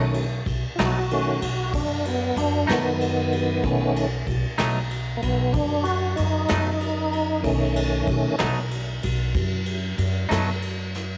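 Laid-back and gritty, this slow blues excerpt in 12/8 rests on a single B7 chord, with a lightly overdriven tonewheel organ up front playing full sustained chords through a slow rotary speaker and chorus vibrato, its key click audible until it stops at 8.4 seconds. A clean, compressed semi-hollow electric guitar picks accompaniment with harmonic tremolo, while a woody pizzicato upright bass sits up front and a vintage brush kit of kick, ride and medium-tuned snare adds a dark, rolled-off pulse from a small room. A moderate echo chamber reverb gives the whole group a sense of space.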